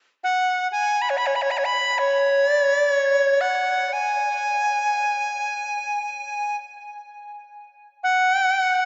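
A lone tenor recorder, reedy and airy with soft, chiffy attacks and gentle vibrato, sits up front from 0.2 s in this brief, meditative world-music fragment cut from a longer piece, its unhurried phrases drifting in free time through a vast, echoing cathedral reverb, with the dulled sound of cassette tape.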